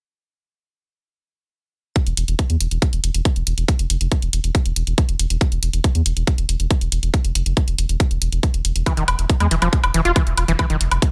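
A tight, up-front electronic kick drum and layered electronic hi-hat and woodblock drive this hypnotic psychedelic trance excerpt at 139 BPM in a straight 4/4 from 2.0 seconds, over a round, deep analog bass ranging from E1 to E2, while a squelchy, gritty overdriven acid bass riff with distortion, sidechain pumping and tape echo cuts in at 8.9 seconds, all in a dry, dense, heavily limited modern mix.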